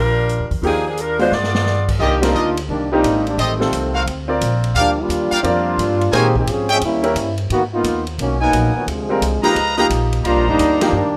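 Lightly reverberant and rough like a home demo, this joyful, brassy big band swing snippet moves at 175 BPM, with a woody pizzicato upright bass up front, a distant, roomy drum kit with dark cymbals and a boomy kick, and a bright, brilliant upright piano with short sustain. A clear saxophone section with light vibrato opens on the melody, and a drum fill leads to 2.0 seconds, where the saxophones give way to a trombone section solo. Through to the end, the trombones, singing with vibrato, carry a second line while a soft-attacked trumpet section adds stabs, both sections touched by plate reverb over extended jazz chords.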